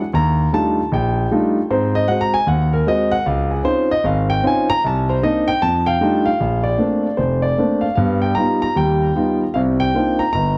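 A swung 4/4 pulse at 153 BPM carries this short solo jazz excerpt in Bb major, cut from a longer piece, with a swinging, warm mood. A lone concert grand piano, up front and intimate with audible action noise, deep bass and long sustain, plays from F1 to Bb5 through tape echo, moving through rich extended chords such as Ebmaj9#11, Dbmaj9 and F13 before settling on Bbmaj9 at 6.4 seconds. The wet studio reverb and dark, warm production give the piano a smooth glow as it closes on Gaug7 and Cm11.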